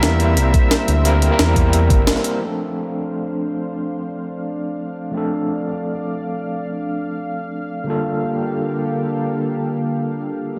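A gritty, pitched-up sampler breakbeat with a thumpy electronic kick and an up-front, gliding sawtooth bass drives the opening of this lush, dreamy liquid drum and bass excerpt in free time and D minor, with a hollow, woody clarinet-like lead sitting in the background, before a break at 2.1 seconds leaves a barky, overdriven tine electric piano with medium tremolo and dub echo, filter-swept from 2.4 seconds, and a thick, warbling, detuned unison pad pumping under chorus to carry the Dm7 and Gm9/D chords to the end.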